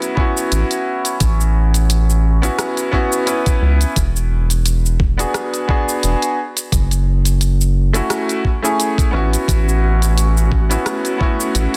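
A bright, brilliant grand piano with a delay opens this sunny, blissful sunset chillout cut in A major, riding a smooth R&B kit of cabasa, smooth hi-hat and rim click with a lightly clipped snare, while a knocking, tape-toned electronic kick and a round, deep analog bass with tube saturation sit up front at 87 BPM with a gentle 16th-note swing. The chords move from A6 through E9 and F#m9 back to A6. At 10.1 seconds an ethereal, airy, detuned pad with chorus and its own reverb drifts in, sitting in the background, before this short section of a longer piece is cut off, all under a dense, heavily limited modern master.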